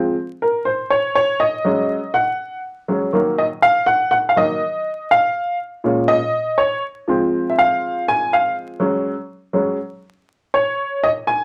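Soul piano piece with an urgent, passionate mood, heard as a short cut from a longer work in a straight 4/4 feel. A clear, woody upright piano plays alone throughout its 11.4 seconds, sounding worn and slightly detuned, with an open, up-front tone and short sustain as it moves through chords such as Fm, Gbsus2, Ebm and Bbm7. A wet small-room reverb and a layer of vinyl crackle give the recording an aged, intimate character.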